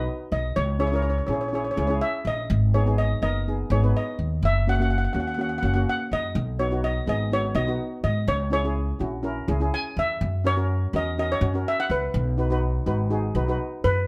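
Heard from the first moment, a woody, growly pizzicato upright bass sits up front beneath two shimmering double-seconds steel pans, one played with hard rubber sticks carrying the melody through a plate reverb and the other with medium rubber sticks adding accompaniment, in a sunny, bouncy straight-feel calypso at 124 BPM in B major, tuned to A4 = 443 Hz, cycling through B, C#m, G#m and F# before an F#7 returns to B at 12.1 seconds in a short passage cut from a longer piece with light reverb.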